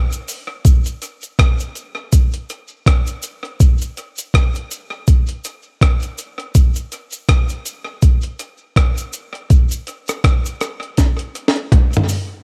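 Longing and smooth, this reggae excerpt moves at 81 BPM in a swung 4/4, carried by an up-front, pitched-up breakbeat sampler-style drum kit with a gritty, compressed, cassette-tape character, a thumpy kick, a medium-tuned snare, rim clicks, hi-hat and toms, while a quieter, saturated cabasa with a maraca-like, group-handclap rattle sits behind it through tape echo, all in a dry home cassette recording that closes with a drum fill from 11.0 s.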